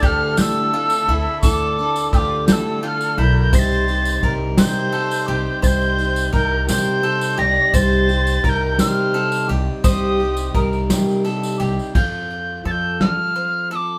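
A live band in one room, with a moderate studio reverb, gives this short cut from a longer acoustic folk piece a pastoral, gently warm feel at 57 BPM in a straight 6/8. Up front, a breathy tin whistle carries the melody high with vibrato and a tongued chiff, joined by a rich, bowed erhu second line that slides with portamento until 10.6 s, while a reedy, close-miked harmonium sustains chords. A full-bodied picked steel-string guitar, bright mandolin arpeggios, woody, growly pizzicato upright bass, a dark brush drum kit with punchy kick, and a jingly tambourine round out the sound; the harmonium and tambourine stop at 11.9 s as the harmony moves to F at 12.0 s.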